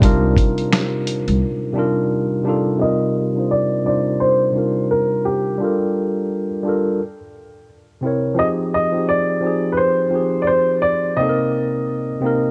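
Lo-fi hip hop in C minor at 86 BPM, this reflective, hazy excerpt moves in 4/4 with a 58% swing on the sixteenths. An intimate upright piano with audible action noise carries the melody between G4 and Eb5, its smooth, vintage tone softened by a low-pass filter. A tine electric piano, worn, slightly out of tune and heard through its built-in speakers, supplies the accompaniment with a cassette-tape coloring. For the first 1.4 seconds a growly pizzicato upright bass sounds a low C under a gritty, compressed sampler-style kit of finger snaps, hi-hat, thumpy kick and medium-tuned snare; both then drop out for a break that leaves the two keyboards. From 2.8 seconds a filter sweep runs to the close as the harmony moves from Cm11 through Gm7, C7b9 and Fm7 before settling on Cm7, all wrapped in light reverb, studio ambience and the warbling pitch drift of old tape.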